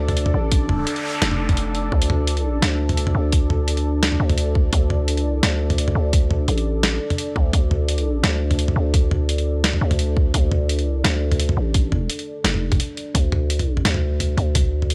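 Dark and tense, this half-time drum and bass cut rides a swung groove from its opening drop. A growling, buzzy 808-style bass sits up front with a fast attack and decaying tone, while a hard-clipped electronic kick punches in at 0.5 seconds. A sampler-style kit of hi-hat, medium-tuned snare and toms adds a pitched-down, gritty, tape-warm crunch inside a small room ambience. Beneath them, a deep, moody pad built from detuned sawtooth unison, a sub octave, wave-folding and ring modulation holds mellow sustained chords through chorus and its own reverb, pumping under sidechain. A brief electronic noise sweep runs from 0.7 to 1.9 seconds, short breaks punctuate the drop, and the recording carries a dry, gritty cassette character.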